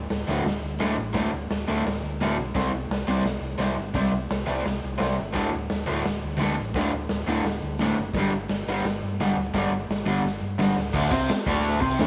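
A double-tracked, overdriven garage guitar leads this swaggering, rowdy garage rock excerpt at 172 BPM, its picked riff moving through D5, C5 and G5 power chords before landing on a D7(no3) as the passage shifts at 11.0 seconds. Up front beside it, a raw acoustic kit with a punchy kick, medium-tuned snare, hi-hat and crash sounds dark and smooth in a bright stone room, throwing in a fill at 10.3 seconds, while a round, hollow-body electric bass fingers the low end. A compressed, jingly tambourine joins in the background at 10.9 seconds, and moderate spring reverb gives the whole cut a roomy feel.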